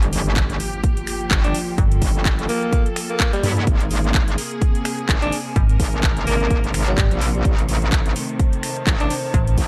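A growling alto saxophone carries the melody from 1.4 seconds, raspy and gritty with scooped notes and a touch of delay, over a bouncy, swaggering bass house groove at 127 BPM in G minor with a swung 16th feel. Beneath it, a distorted, wobbling metallic bass and a punchy, up-front electronic kick drive the track, joined by a digital FM bass that returns at 5.6 seconds, a tape-warm house kit of finger snaps, handclaps and metallic hats, and an electronic impact that opens the passage. Lush bowed symphonic strings hold sustained chords moving from Gm7 to Abadd9 and Adim, while a dark, warbling lo-fi pad sits in the background, with the strings, pad and basses pumping to the sidechain in a dry, close mix cut from a longer piece.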